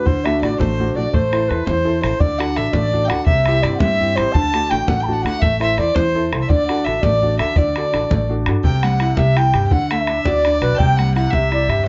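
Heard in a small room with a softened top end, this lively, cheerful Celtic jig in 6/8 features a mellow wooden baroque flute carrying the tongued melody with vibrato, a quieter, clear and earthy bowed fiddle on a second line, a bright, slightly detuned upright piano accompanying, a dark, thumpy gut-string upright bass played pizzicato, and a damped, tight bodhran, with the tune moving into a new section at 8.6 seconds.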